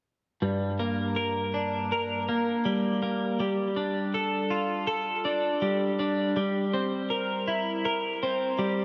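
Moving in a straight, unhurried 4/4, this melancholic, cinematic rock fragment is cut from a longer piece. A twelve-string electric guitar plays solo from 0.4 to 8.8 seconds, picked cleanly with a bright, twangy edge. Its compressed tone sits up front and is touched by subtle chorus and tape echo. The harmony shifts from G minor to Dm over a G bass, then to C7 over G, keeping the low note anchored beneath the changes. A lush hall reverb bathes the guitar in a big arena sound, lending the short passage a wistful, expansive sense of space.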